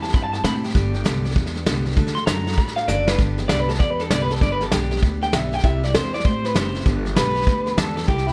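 Studio ambience surrounds this rollicking, upbeat rockabilly excerpt, which swings in four over chords moving through C, G and D. Up front, an electric guitar through a small old amp carries the melody with a twangy, slightly broken-up, lo-fi bite and analog delay, while a full-bodied jumbo steel-string acoustic guitar is picked underneath and a woody, thumpy pizzicato upright bass on gut strings anchors the low end. A soft, roomy brush kit with a tight kick and medium-tuned snare plays a fill at 2.9 seconds that leads into a clean electric guitar solo from 3.2 seconds to the end at 8.3 seconds.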